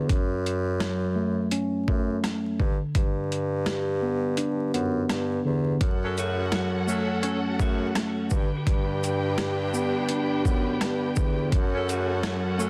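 A swung 84 BPM boom-bap groove in 4/4 drives this tough, gritty hip hop passage in F# phrygian. The sampler-style drum kit sits up front with a thumpy kick, medium-tuned snare, rim click, hi-hat and shaker, all overdriven and compressed as if re-recorded in a small room. The kick drops out at 4.4 seconds and returns at 5.8 seconds. Beneath it, a mellow tine electric piano moves between F#m and G through a cassette-tape haze, while a solo bassoon carries the low line with a soft attack and light vibrato. From 5.8 seconds a studio string section adds expressive bowed chords with portamento and a smooth top, and at 6.0 seconds a tight, close-miked jazz saxophone section punches in with stabs trailed by tape echo. Very quiet, saturated finger snaps join shortly after, and vinyl crackle with small-room ambience frames this dense, heavily limited cut from a longer piece.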